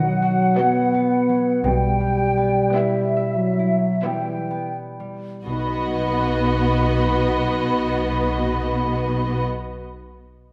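A serene, tender classical excerpt, this slow romantic movement in B major sways in 3/4 at 40-58 BPM with rubato, slowing over its first 5.5 seconds as a focused, distant violin section carries the melody over pure, mellow flutes, background violins and a lush viola section with portamento. Dark French horns sit up front with soft-attack sustained chords while a ringing concert harp plays arpeggios. Cellos and double basses enter near 1.6 seconds as the harmony moves to Em/B, and a warm background clarinet joins at 5.5 seconds, all within a wet scoring-stage reverb.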